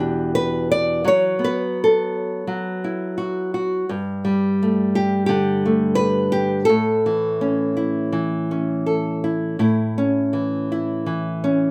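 Lightly reverberant, this short cut from a longer, peaceful folk piece features a single nylon-string guitar, fingerpicked up front with a small, warm tone and audible finger squeaks, drifting in a rubato 4/4 around 84 BPM through Em7, Bsus4 and Gadd9 before reaching A in A mixolydian, with a new section arriving at 9.6 seconds.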